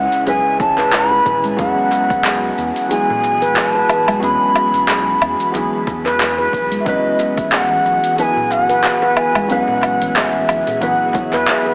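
A breathy bamboo bass bansuri carries the melody up front from the start, over a soft, felt-muted upright piano and an ethereal detuned pad that pumps gently in the background, all bathed in shimmer reverb, as this earthy organic downtempo piece moves at 91 BPM in a swung 4/4 through C#m7, Eadd9 and Bsus4. A ringing stainless-steel handpan arpeggiates from 0.3 seconds alongside a crisp darbuka, over a round sine sub bass and an overdriven deep house kit with metallic hats, handclaps, shaker and woodblock that are already in place. A punchy electronic kick sits in the background until 11.5 seconds, and the whole fragment has a heavily compressed, small-speaker radio sound inside a huge ambient space.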